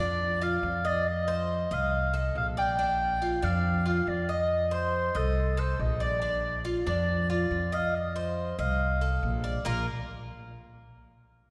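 Latin music in the Cuban son and guajira tradition, this danceable, warm-hearted excerpt moves in a straight four-beat feel. A clarinet carries the melody in a classical style, its tone warm and roomy, sounding somewhat distant yet still up front as the solo voice. Beneath it, a Cuban tres plays picked arpeggios with bright, metallic double strings, some of them octave-doubled. An upright bass on gut strings provides a woody, dark, thumpy pizzicato foundation that sits forward in the mix. The harmony rocks between the home chord and its dominant seventh, and all three parts play together until about 9.9 seconds, with a new section arriving at 9.7 seconds just before the cut. A generous church reverb with a long tail wraps the ensemble in a spacious, resonant hall sound.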